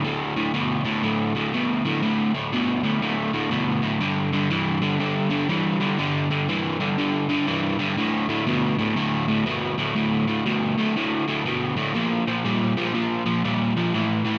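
Brooding and gritty, this rock excerpt moves at 121 BPM in 4/4 with a swung eighth-note feel, sitting in D minor with tuning slightly below standard pitch at A4 = 437 Hz. A crunchy, overdriven electric guitar carries the whole passage alone from 0.0 to 14.4 s, picked and double-tracked, placed up front with a warm, saturated bite. Its low register spans D2 to G3, and slapback echo plus tape echo add a rough repeating edge to the tone. Power chords shift from D5 to G5, back to D5, and land on Bb5 at 11.9 s. A lush hall reverb with a 2.0-second decay gives the recording a big arena sound, and the clip is cut from a longer piece.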